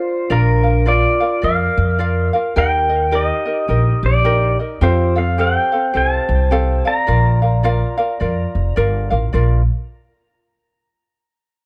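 Languid and dreamy, this Hawaiian excerpt swings gently at 106 BPM in Bb major, with a bright, clean electric pedal steel guitar carrying the melody through volume swells and slide, bathed in plate reverb and tape echo, while a metallic, ringing vibraphone with hard mallets traces a second line, a light fingerpicked ukulele with plate reverb plays the accompaniment, and a woody pizzicato upright bass enters at 0.3 seconds up front beneath chords moving from Bb to Eb and Fadd9 in a dark, warm production.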